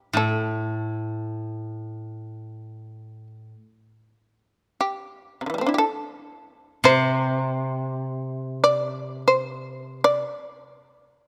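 A plectrum-plucked shamisen opens this short cut from a longer piece of Japanese chamber music, its fretless, buzzing tone carrying the melody up front in free time with a calm, austere air. A koto enters at 0.1 seconds as accompaniment, played with fingerpicks in a low register, its woody, dry sound sitting close alongside. The koto stops at 10.2 seconds, leaving the shamisen alone until 11.3 seconds, all captured by close, detailed microphones in a light reverb.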